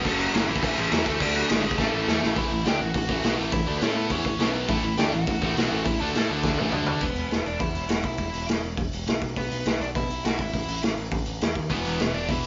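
Punk rock at 206 BPM in A major, energetic and upbeat, cut from a longer piece and played live in one room with light reverb and a dark, rolled-off top. A nasal lead guitar with a parked wah carries the melody over a growling, round picked bass and a raw, gritty garage drum kit up front, with drum fills at 1.8 and 6.4 seconds. Three riffing guitars sit behind the lead: a biting overdriven one, a faint compressed distorted one, and a double-tracked high-gain one; all three drop out at 7.0 seconds, leaving lead, bass and drums until the riffs return at 11.7 seconds.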